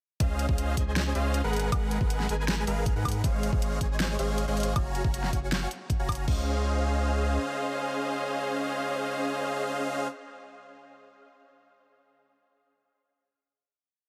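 Lush and playful, this short, dry half-time future bass piece opens straight into a drop where a dense, detuned supersaw pumps dotted-rhythm chords over a saturated sub bass, an overdriven knocking electronic kick and a dubstep kit of huge snare, hat rolls, woodblock and crash, until the drums drop out at 6.4 s and the supersaw rings out a final chord with dub echo to 10.1 s.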